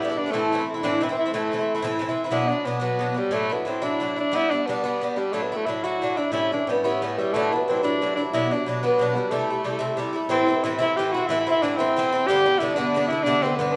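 Set in a straight 6/8, this spirited Celtic folk fragment of a longer piece feels dark yet lively, with a warm tenor saxophone singing the melody up front in a vintage, classical style with vibrato. A bright, metallic Irish bouzouki with picked double strings accompanies, also up front, while a hammered cimbalom adds a shimmering, ringing second line in the background, pausing at 4.2 seconds and returning at 6.3 seconds. The trio sits in the moderate reverb of a recital hall.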